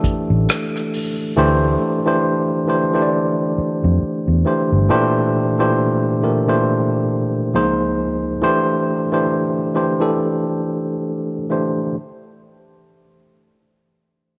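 A worn, slightly out-of-tune tine electric piano, lightly overdriven through its built-in speakers, carries this soulful, smooth neo-soul R&B excerpt in C major at a relaxed 68 BPM with a gentle sixteenth-note swing, moving through Am7, D9sus4, Bb6 and Dbmaj7 before settling on C. A dark, round, foam-muted vintage fingered electric bass sits up front beneath it until 4.9 seconds, while an airy, polished acoustic drum kit played with bundle sticks offers a tight kick, hi-hat and rim click only through 1.2 seconds. Light reverb and a small room ambience give the sound an intimate closeness.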